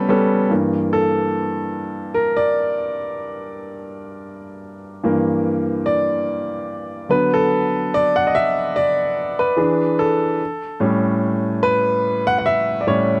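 A brief baby grand piano fill opens this soul fragment before the instrument settles into an unaccompanied solo at 0.5 seconds. The tempo is a relaxed 73 BPM in 4/4, with a gentle swing on the sixteenth notes that gives the mood a smooth, warm ease. The piano spans G2 to B5 and sounds clear and intimate, sitting up front with a natural tone, long sustain and audible action noise from the keys and hammers. The harmony moves from Gm6 to D6 at 7.1 seconds, then passes through E7 and A7 near the end. The recording is dry and close, in a 1970s-style studio manner, so the instrument's detail comes through plainly.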